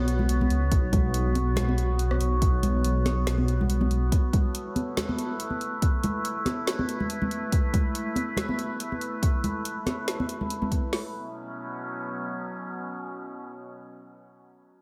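A half-time deep dubstep groove at 141 BPM swings its sixteenths, driven by an up-front electronic kit with a punchy kick, woody snare and dark hats, layered with a fainter second kit adding rim clicks, while close, ringing congas carry a dub echo. A deep, rumbling detuned saw bass holds the B5 opening only until 4.1 s, and a nasal drone with moving overtones, chorus and its own reverb sustains chords from B5 to A5 and back across the whole brooding, meditative stretch. The drums drop out near 11.0 s, leaving the drone in a dreamy, reverb-soaked mix until it ends at 14.1 s in this fragment of a longer piece.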